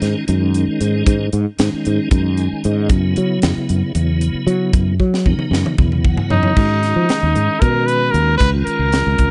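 A slick, nocturnal slice of electric jazz fusion opens with tonewheel organ, fretless electric bass and a crisp fusion drum kit all sounding at once, moving in a brisk 7/8 at 229 BPM counted in eighths. The organ sits back in the mix with a piping, scooped tone, lightly overdriven through a slow rotary speaker with chorus vibrato and audible key click, and it adds short fills around 2.1 and 5.8 seconds. Up front, the fretless bass is dark, round and direct, while the acoustic kit has an airy, polished studio-room sound with a high-tuned snare and punchy kick, rolling into a fill from 5.0 seconds. The harmony shifts from G#7sus4 to F#7sus4, then to G#m7 and C#69 in the closing stretch. At 6.3 seconds a forceful jazz trumpet takes the solo, bright with a smooth top and light vibrato. The excerpt is cut from a longer piece and has a studio ambience.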